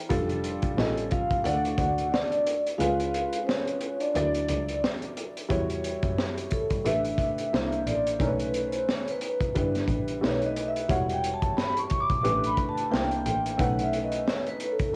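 Soft-mallet vibraphone carries the melody from 0.8 s, its ringing, metallic tone softened by tape echo, plate reverb and a band-limited vintage cast, and it takes a solo from 5.5 s to the end of this cut from a longer piece. Underneath, a worn, woody upright piano, slightly detuned, supplies present accompaniment through chords such as Dmaj9, Em69 and B7b13 in E dorian, while a bowed double bass plays a smooth, nasal, boxy bass line with vibrato. The gritty, saturated breakbeat kit sits up front with a punchy kick, high-tuned snare and hi-hat, its top rolled off for a dark, small-room feel, and the kick drops out between 2.8 and 5.5 s. A close-miked trombone adds a mellow second line with jazz vibrato in the background, lasting only until 4.8 s. The result is a mellow, nocturnal jazz-hop groove at 89 BPM in 4/4 with a gentle sixteenth-note swing, its cassette home recording lending a hazy, intimate character.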